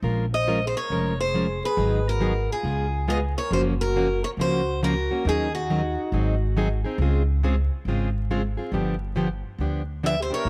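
Bittersweet and virtuosic, this excerpt of acoustic string swing moves at 138 BPM in a swung 4/4, with a picked plugged-in steel-string guitar picking bright, fresh-stringed accompaniment over a woody, thumpy pizzicato upright bass on gut strings, both up front. A boxy parlour steel-string guitar carries the melody with audible finger squeak, joined by a mellow, round, horn-like synth second line with soft attack, vibrato, chorus and a filter sweep; both drop out at 6.8 seconds and return near the end. Chords run from Bbm9 through Gbmaj7 to Dbmaj7 and G7, wrapped in light reverb and vinyl crackle.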